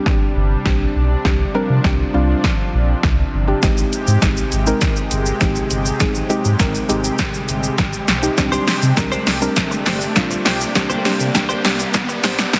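A punchy analog drum machine sits up front in this bittersweet yet confident dance-pop excerpt at 101 BPM in C minor, its dry, punchy kick and snare joined by hi-hat and shaker through a fill that runs the whole 12.6 seconds, with soft clipping giving the snare extra bite. Underneath, a deep sub bass with an added octave holds a full, sustained low end with sidechain pumping, alongside a soft, round pluck and a thick, warbling unison pad, both treated with chorus and the same sidechain pumping. The chords move from Csus2 to Abmaj7 at 3.6 seconds and back to Csus2, while a very quiet electronic riser creeps in at 3.2 seconds as a filter sweep shapes the build-up. At 8.4 seconds a clean, direct-recorded electric guitar enters with a picked, scooped riff coloured by analog chorus. The mix is dense and heavily limited, set in a moderate, lush hall reverb that lends the building section a sense of space.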